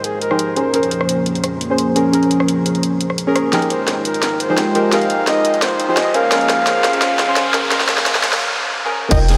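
Liquid drum and bass with a dreamy, melancholic mood, this excerpt is a build-up cut from a longer piece, drenched in a huge ambient reverb. A soft, dark chord stab and a smooth, mellow analog pad carry chords moving between Fm11 and Bbm9/F, both touched with chorus. Over them, a solo flugelhorn with light vibrato plays a close-miked melody through a low-pass filter and delay. Filter sweeps run across the pad and horn as an up-front electronic kit drives a cracking snare, hi-hat, rim click and crash through a drum fill, and a background riser joins at 5.4 seconds. The pad stops at 8.4 seconds for a short break. At 9.1 seconds a deep, full sub bass with octave arrives alongside a tight, layered electronic kick and a gritty, saturated breakbeat kit tucked in the background.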